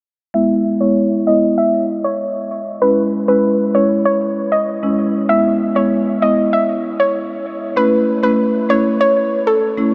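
Drenched in a huge ambient reverb that gives the mix a dreamy haze, this sunny, summery dancehall excerpt at 97 BPM in E major sets a dark, soft, round pluck melody, treated with chorus, low-pass filtering and analog delay, over a woody, boxy marimba accompaniment played with medium mallets, both sitting up front, while a filter sweep runs from 0.3 to 9.9 seconds across chords moving from E to C#m, back to E and on to A.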